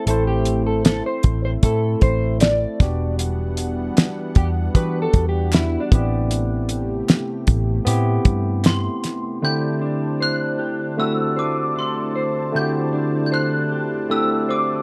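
This wistful, lonely indie and bedroom pop fragment has a dark production with light reverb. A barky, lightly overdriven tine electric piano plays alongside a mellow, clean electric guitar with lush chorus and warbly pitch drift, which plays a solo through the first 9.4 seconds, over a smooth, detuned sawtooth pad in the background. A dry 70s drum kit with a fat snare and tight kick, a round, punchy foam-muted bass and very quiet, crisp group handclaps drive the straight 4/4 feel until about nine seconds, while a bell-like glockenspiel played with soft plastic mallets enters at 8.7 seconds, ringing through ensemble chorus and slapback echo.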